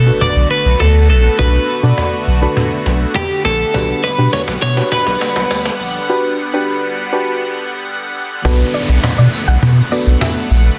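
A clean, up-front twelve-string electric guitar carries the melody through the opening 7.8 seconds of this driving, bittersweet dance-pop excerpt, its picked, compressed chime trailed by tape echo. Underneath, a round, sine-like sub bass sits deep and prominent at 102 BPM in B minor. A lush supersaw pad with a slow attack and phaser holds sustained chords, while a dark, detuned chord stab with chorus and a filter sweep fills in the accompaniment as the harmony moves from Bm7 to Gmaj7. A woody, band-limited cajon played with soft hands drives the rhythm, joined at 3.7 seconds by a jingly tambourine sitting distant in a large room, and an electronic impact opens the passage before a downlifter marks the drop at 8.4 seconds. Moments later a gentle, soft round pluck with chorus and tape echo takes up the melody in the background, all set in light reverb with a dense, heavily limited modern master.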